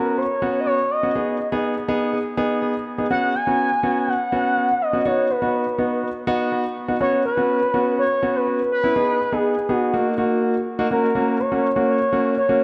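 From the first moment, an expressive synth lead and a concert grand piano sound together in this melancholic, cool pop fragment, moving at 123 BPM in a straight 4/4 and tuned to A4 = 435 Hz. The lead carries the melody with a smooth, dark tone blending sawtooth and triangle waves, its soft attack and sustained notes shaded by vibrato, chorus and analog delay. Beneath it, the piano plays accompaniment in its middle register, intimate and polished, with audible action noise and deep bass, and it also passes through analog delay. Both parts sit up front in an echo-heavy mix bathed in a moderate plate reverb. The harmony circles through F#sus4, G#m and B, touching D#m before arriving on F# at 10.9 seconds as a new section begins, and the recording, cut from a longer piece, stops at 12.6 seconds.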